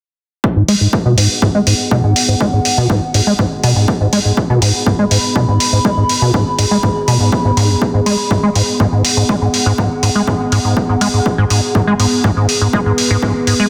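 Gritty and raw, this acid house excerpt at 122 BPM in G# minor holds a single G#m7 chord. A squelchy, resonant square-wave acid bass riff sits up front under a filter sweep, with chorus, tube saturation, delay and sidechain pumping. A punchy, tape-warm electronic kick enters at 0.4 seconds, joined by metallic hi-hats re-recorded in a large room. A warbling, lo-fi, detuned pad of sustained chords with chorus, reverb and pumping arrives at 1.2 seconds, and the whole mix carries light reverb and a dense, heavily limited master.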